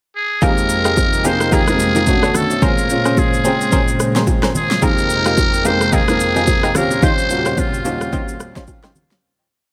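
Amapiano with a hypnotic, soulful mood, this short complete piece opens with a muted trumpet in a brief pickup before the groove settles in at 0.4 seconds. The trumpet, fitted with a metal mute and touched with tape echo, sits up front with a buzzy, raspy, growling tone, stating hook phrases in a motif-based melody. Beneath it, a clear but slightly boxy baby grand piano plays syncopated, rootless chords with grace notes. A smooth, detuned analog pad holds sustained chords in the background with chorus and sidechain pumping, while bright, punchy sawtooth and square-wave stabs add short syncopated hits with chorus and tape echo. The deep house kit drives the amapiano groove with a steady shaker, soft kick, syncopated rim clicks and a fat snare, supported by very quiet, soft-handed congas and bongos recorded in a small room. The harmony moves through rich minor and extended chords under light studio reverb, and the track fades out from 7.0 seconds to its close at 9.2 seconds.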